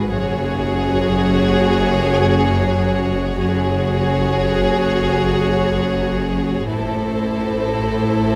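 A close, intimate string ensemble in moderate scoring-stage reverb carries this uneasy, eerie suspense film cue in free time, with two violin lines bowed softly sul tasto with vibrato over violas, cellos and rich double basses holding an F#sus2 chord that shifts to Am at 6.7 seconds, while a swarming, detuned granular drone hovers in the background throughout this short excerpt.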